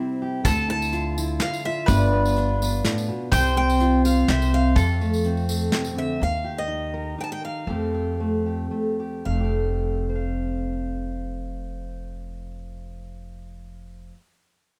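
Two steel-string acoustic guitars open together, one picking a high melody while the other, a fingerpicked dreadnought sitting up front, lays down a broad accompaniment in F major, setting a nostalgic, hopeful tone for this acoustic folk piece in 3/4 at around 107-125 BPM. Within the first second a mandolin with mellow, round double strings adds a second line, joined by a soft brush kit with a tight kick and medium-tuned snare, a jingly tambourine, and a woody, thumpy pizzicato upright bass on gut strings. The harmony moves from Dmadd9 through G7 and a suspended C resolving to F, giving the opening a gently searching quality. Near 6 seconds the mandolin, brushes and tambourine drop away, leaving the guitars and bass as the tempo slows over an Eb chord before settling onto Fadd9. Light reverb gives the small group an intimate, close-knit sound, and the passage is cut from a longer piece.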